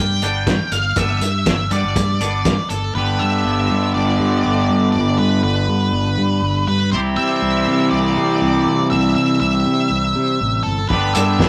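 A straight 4/4 indie rock groove, carefree yet wistful, is cut from a longer piece, with a cloth-damped drum kit thudding up front with a fat snare and tight kick from 0.2 to 2.8 seconds before dropping out and returning at 10.9 seconds. A round, mellow fretless bass holds down the low end while two picked overdriven guitars, one crunchy and sitting in the background and the other raw and bright, carry riffs over chords moving from Gadd9 through G and Cadd9. Up front, a dark octave-fuzz lead guitar sings the melody through distortion and digital delay, all in a rough rehearsal-room sound with tube saturation and a moderate stone-room reverb.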